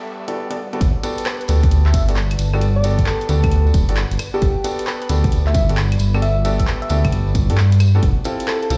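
Soulful and bouncy, this two-step UK garage cut moves at 133 BPM in G major with a shuffle on the sixteenths, drifting from Gmaj9 to Fmaj9 at 8.0 seconds. An ethereal, airy pad holds sustained chords very quietly throughout, while a clear, polished baby grand piano plays stabs trailed by dub echo. The opening moment brings a faint noise sweep and a bright, intense string section in the background, its bowed texture pumping against the sidechain, and at 0.3 seconds a dry analog drum machine begins ticking out claves, handclaps, hi-hat and rim clicks before the drop lands at 0.8 seconds. From there a dark, detuned saw bass rumbles up front with saturated weight, an overdriven electronic kick punches underneath, and a jingly tambourine sits set back in the mix. A round, gentle FM lead with a keys-like strike carries the melody from 1.3 seconds, shimmering with chorus and dub echo. The mix is close and dry, with a stone-room ambience like a big sound system in a bare space.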